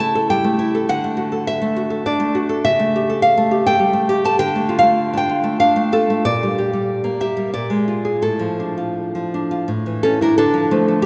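In a 3/4 metre with a free, rubato feel drifting between 80 and 105 BPM, this short excerpt from a longer romantic piece for solo classical guitar unfolds in D minor with a melancholic, wistful mood. A single fingerpicked nylon-string guitar carries everything, sitting up front with a warm, acoustic tone and ranging from A2 up to A5. The harmony leans on the dominant, moving from A7/C# through D and back before settling on D minor, then darkening through Gm/Bb and Bb7. It passes through Dm/A and A before resolving to D minor at 10.4 seconds, closing the phrase just before the guitar stops at 11.1 seconds. The guitar is bathed in a long, wet church reverb, giving the playing a spacious, hall-like glow.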